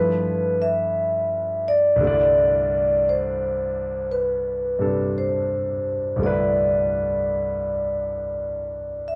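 A vibraphone played with soft mallets carries the melody in this tender, late-night jazz fragment, its metallic, ringing tone softened by a slow motor vibrato and set in plate reverb as it moves between B4 and E5. Beneath it, a grand piano with a smooth, vintage character supplies the accompaniment across a broad range from C2 to D5, sitting a little lower in level than the vibraphone. Both instruments are placed up front and play together from start to finish over roughly 9.2 seconds. The tempo is a slow 57 BPM in 4/4 with a gentle swing on the eighth notes, and the harmony moves from G13 to Cmaj13 at 2.0 seconds, settling into C major. A moderate large-studio reverb and a dark production give the short passage, cut from a longer piece, a hushed, intimate glow.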